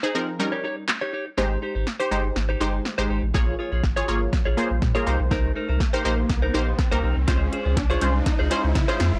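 A bright, detuned sawtooth unison pluck carries the accompaniment of this carefree, summery dance-pop piece in Ab major at 122 BPM, its filter-swept, phaser-tinted chords pumping with sidechain, while a clean, direct-recorded electric guitar riff shimmers under lush chorus through Abmaj7, Bbm7, Cm7 and Dbmaj7. A layered deep house kit of deep kick, punchy snare, hi-hat and handclaps enters at 0.9 s, a round sine sub bass joins up front at 1.4 s with its own sidechain pumping, and a background riser from 2.9 s feeds a build-up and drum fill that run to the end of this cut from a longer track. The mix is dry and gritty, colored by transformer saturation from hardware.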